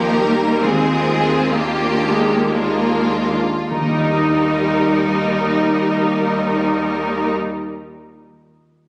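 A classical fragment cut from a longer piece, this lyrical, warm passage moves in three with a flexible, rubato feel and slows down over its opening 3.7 seconds. Two violin sections carry the upper lines: the leading one sings the melody with a clear, smooth tone and light vibrato, sitting close and up front, while the second traces a focused second line further back. A viola section supplies the accompaniment with an intense, lush vibrato that sounds bright and distant yet stays prominent, and a cello section anchors the bass with a steady low note. Concert harp arpeggios ring alongside the strings and let their last notes linger until 7.6 seconds, just after the bowed parts stop at 7.3. The ensemble sits in a moderate scoring-stage reverb, and the sound has the slightly compressed character of a phone capture made in the room.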